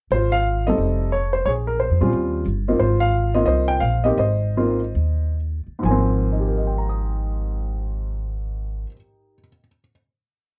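A sophisticated jazz piano trio miniature in Ab major with a swung 4/4 feel between 125 and 180 BPM, where an intimate baby grand piano, with audible action noise, states a motif-based melody over syncopated rootless comping while a woody, thumpy pizzicato upright bass plays a two-feel line; the tempo slows from 2.8 to 5.8 seconds before a final chord rings out from 5.8 seconds in a dark, lightly reverberant production.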